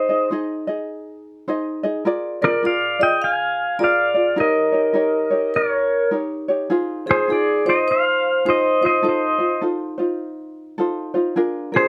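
A clean, compressed electric pedal steel guitar carries the melody up front with fingerpicked slide lines and volume swells in this dreamy, languid Hawaiian excerpt at 103 BPM in swung 4/4, while a dry, close-miked vibraphone struck with medium hard mallets, motor off, rings out a full, metallic second line and a mellow, light acoustic tenor ukulele fingerpicks the accompaniment through Ab, Bb7, Eb7, Ab6 and F7 chords, the trio sitting in a moderate studio reverb for 11.9 seconds.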